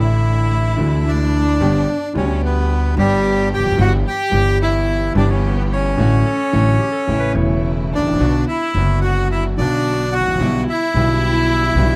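Playful and passionate, this tango fragment, cut from a longer piece, moves in four with a rubato feel. A reedy, close-miked bandoneon carries the melody up front, its dry, full tone sitting beside a pizzicato upright bass whose woody, thumpy notes anchor the low end. A single bowed violin adds a second line with expressive vibrato and portamento, while a baby grand piano supplies open, long-sustaining accompaniment. A lush symphonic string section plays very quiet stabs beneath, and between 6.3 and 7.7 seconds a soft-attacked, vintage-sounding clarinet briefly adds its own line in the background. Light reverb surrounds the ensemble as the harmony travels from Dsus2 through G, Em/G, D/A, A and Bm before settling on Em7/B.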